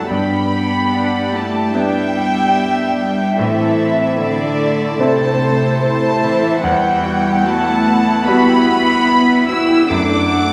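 Cinematic, emotional film score for orchestra, this brief excerpt cut from a longer piece moves at a rubato 73 BPM in E minor, its mood bittersweet and full of longing. A dark studio violin section carries the melody up front, its intimate, vibrato-touched tone bowed sul tasto with a soft attack, while a second violin section adds a pure, floating line beneath it. A bright concert grand piano with a brilliant, slightly worn character and deep bass supplies accompaniment alongside a woody, lush viola section. A clear symphonic cello section anchors the bass with a soft-attacked, sul tasto sound. All five parts play throughout the 10.5 seconds, passing through G6, Am, Emadd9 and Bm7/F#, set back in a wet scoring-stage reverb with a 1.8-second decay.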